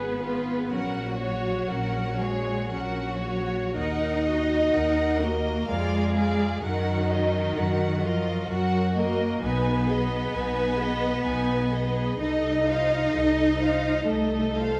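Bowed violin sections carry this solemn, elegiac slow romantic movement for string orchestra, their smooth, even melody and second line set over focused violas, a lush cello section and an intense, up-front double bass, all moving together in 3/4 with rubato at 55-66 BPM through chords such as D#m and F7/C in a moderate scoring-stage reverb.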